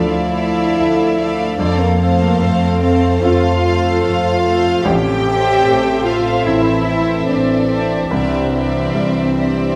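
Longing and sorrowful, this rubato cinematic passage at 74 BPM, cut from a longer piece, moves through Dm, F, Am and a closing Cadd9 over about 9.8 seconds. A warm violin section carries the melody with light vibrato and soft, sul tasto bowing, while a second, darker violin section adds a close, intimate line. Beneath them, the dark cellos sit prominently on the bass with the double basses, a rich, floating viola section and a clear, short-sustaining baby grand piano fill out the accompaniment, a dark French horn section holds chords, and a ringing, fingerpicked concert harp plays arpeggios in the background, all set in the wet reverb of a scoring stage.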